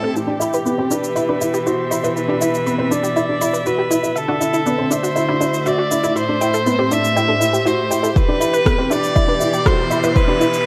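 A clear, smooth solo violin with vibrato carries the melody up front under a filter sweep, joined by a dark, mellow baby grand piano riff and a rich, close string quartet holding sustained chords that pump against the sidechain. A sawtooth analog pluck, detuned and chorused, spins delayed arpeggios in the background while an overdriven electronic shaker and rim click drive an intimate, moving build-up in this piano and strings electronica excerpt, all set in a lush hall reverb. A deep, layered electronic kick punches in at 8.2 seconds, and a soft riser rises from 9.8 seconds as the passage is cut from a longer piece.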